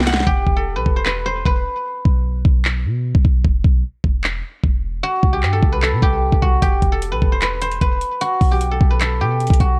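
Hard-hitting and eerie, this half-time trap cut sets a silvery, ringing guzheng melody, filtered and trailed by digital delay, over a deep, boomy sine 808 bass and an up-front trap kit of knocking kick, sharp snare, handclaps and metallic hi-hats that drop out from 0.3 to 6.6 seconds after an opening fill, all steeped in small-room ambience and the warbly pitch drift of worn cassette tape.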